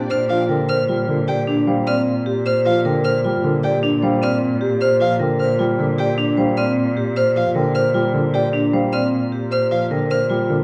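Ringing, metallic vibraphone arpeggios struck with hard mallets stand out in this urgent, hypnotic minimalist classical excerpt in Bb major, moving at 153 BPM in 6/4 alongside a mellow, round marimba melody played with soft mallets. A single cello holds a focused bass, a close, expressive solo violin spins high arpeggios with portamento, and a baby grand piano fills in the accompaniment, while a lush symphonic string section sounds a brief sustained chord in the background only until 0.5 s. The whole is cast in a moderate scoring-stage reverb and a worn cassette-tape sound with warbly pitch drift.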